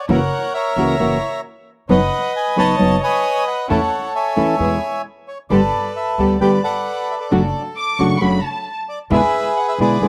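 Tango at 133 BPM in 4/4, played with a rubato feel, this passionate and nostalgic fragment sets a reedy, airy bandoneon melody with slapback echo over a warm, thumb-plucked classical nylon-string guitar and a dark, woody pizzicato upright bass, while a very quiet bowed string section adds smooth, gut-string stabs in period style. Moving through chords from F#7 to Gadd9 and Dmaj7/F#, it closes on E7, and a lush violin section with vibrato and slapback echo enters for a brief second line at 7.8 seconds. The sound is dry and recorded outdoors, with the bandoneon, guitar and violins up front.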